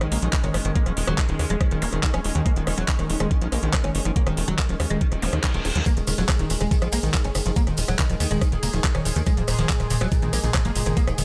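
Psychedelic trance at 141 BPM in Eb minor, alien and driving, with a woody, plectrum-plucked oud carrying the melody through phaser and digital delay over a bubbling, detuned stepped-filter pad, a squelchy, distorted acid bass riff sitting in the background, and a tight, punchy sequencer bass up front. A knocking, tape-warm electronic kick enters at 0.3 seconds to join a garage kit of handclaps, metallic hi-hats, ride and rim click, while the oud, pad and acid bass pump against it. An electronic zap flickers at 1.8 seconds, and a reverse cymbal at 5.2 seconds leads into grainy, distant maracas from 5.9 seconds, all in a dry mix cut from a longer piece.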